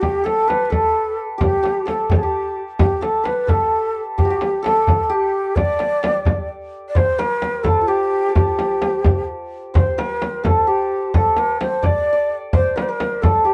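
A moderate studio reverb frames this stately Persian modal ensemble, cut from a longer piece and moving at 86 BPM in 6/8, with the music settling into A dastgah shur from 7.0 s. Up front, a breathy, mellow, end-blown ney carries the expressive melody with vibrato and a crisp attack, its tone distant, while a bright, shimmering hammered santur rings out a second line. Beneath them, a deep, large frame drum sits close, and a tight, dry tombak played with hard hands joins in the background at 1.4 s.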